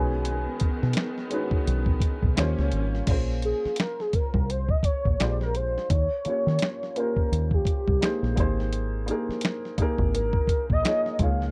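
A dry, close 1970s-style studio sound gives this soulful, late-night neo-soul and R&B excerpt a swung, intimate feel. A velvety, detuned synth lead with chorus and portamento carries the melody up front, then moves into a soft solo from 3.1 s, over a dark, woody upright piano and lush bowed strings that hold sustained chords until 3.1 s. Underneath, a round, foam-muted fingered electric bass and a gritty, compressed sampler-style drum kit with a thumpy kick, finger snaps, hi-hat and crash sit up front, the drums entering at 0.2 s.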